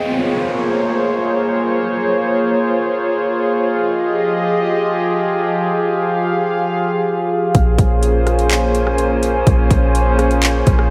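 Atmospheric cloud-rap in free time and Bb dorian, this excerpt feels spacious and melancholic, set in a lush hall reverb with a digital sheen. A warbling, detuned tape-like pad carries the whole passage with sustained, mellow chords moving from Bbm7 to Fm9 and back, its lo-fi, nostalgic tone thickened by chorus, its own reverb and a sidechain pumping. An electronic downlifter opens the piece beneath the pad, ending at 3.7 seconds. At 7.5 seconds a trap kit arrives up front with a hard-clipped kick, metallic hi-hats, handclaps and rim clicks, joined by a deep, boomy 808-style bass on Bb1 with a clean sine tone and fast, decaying attack. From 8.0 seconds an airy, breathy wind-like noise texture drifts in the background, tuned and softened by its own reverb.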